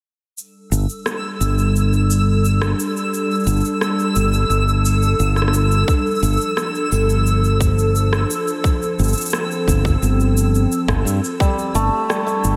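Delicate and wistful, this folktronica excerpt moves at 87 BPM in a straight 4/4, cut from a longer piece and steeped in a dreamy, reverb-soaked ambience. A warbling, lo-fi pad with a nostalgic, mellow glow holds sustained chords with a slow attack and long release, coloured by chorus, phaser and its own reverb, while a twinkling granular texture sparkles high above with an octave-up shimmer and lush chorus. Underneath, a bright, growly fingered electric bass sits up front alongside an overdriven electronic shaker and rim click re-recorded in a large room. The harmony moves from Gsus2 to Dm/G at 5.9 seconds, where a tight, overdriven electronic kick drum enters, and returns to Gsus2 at 11.4 seconds. At that point a ringing hammered dulcimer arrives with shimmering, delayed arpeggios, bringing an acoustic touch to the close.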